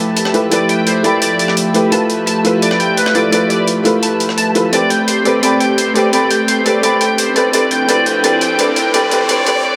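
A straight 4/4 pulse at 171 BPM drives this melancholic, lush liquid drum and bass build-up, cut from a longer piece, with a gritty, compressed breakbeat kit of filtered hi-hat and rim click. An intimate felt-muted upright piano with tape echo sits up front over an airy, breathy pad with chorus, while a bright, twangy electric guitar at the edge of break-up picks arpeggios through analog chorus and digital delay across Fmaj9#11, G13 and Am9. A very quiet electronic riser enters at 7.5 seconds, and a lush hall reverb spreads over the whole mix.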